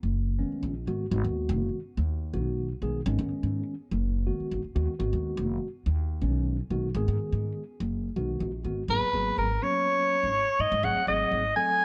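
Electric jazz fusion in G# minor at 124 BPM in 4/4, this slick, funky excerpt moves with a light sixteenth-note swing. An upright bass opens at 0.0 seconds, plucked and up front, with a woody, thumpy tone from its steel strings, holding the low end over a G#m7 harmony. A mellow tine electric piano joins almost at once, clean and soft-edged through its built-in speakers, sitting back in the mix as accompaniment. At 8.9 seconds a growling soprano saxophone takes the melody, raspy and gritty with vibrato and scooped notes, its vintage jazz-style solo set up front with a slapback echo. The harmony shifts to G#m9 as the saxophone arrives, then moves to G#7b9 at 10.8 seconds before the bass drops out and the piano and saxophone carry on briefly. Light reverb gives the recording a modest sense of space, and the top end is gently rolled off.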